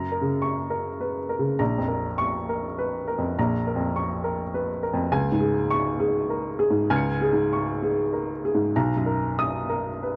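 In an unevenly pulsed, rubato 3/4 at 101 BPM, this intimate and reflective neoclassical minimalist piece features a solo upright piano with a woody, slightly detuned tone and short sustain, placed up front in a dry, close 1970s-style studio sound with light reverb, moving through F#, A#m, C# and Bmaj7 chords in a passage cut from a longer work.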